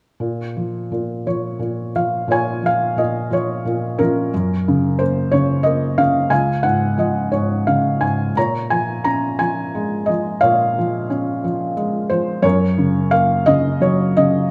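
Close and intimate, the felt-muted upright piano sits up front in a moderate recital-hall reverb that gives its soft, mellow tone a gentle halo. This is a lyrical classical piece for solo piano in B-flat minor, moving at 58 beats per minute in dotted quarters within a 6/8 metre, with a freely breathing rubato feel. The mood is reflective and melancholic, and the piano ranges from low Db2 up to Bb5 as it plays alone from 0.2 to 14.5 seconds. The harmony opens on B-flat minor, shifts to G-flat at 4.3 seconds and D-flat soon after, then settles on B-flat minor seventh before returning to G-flat. The passage is a fragment cut from a longer work.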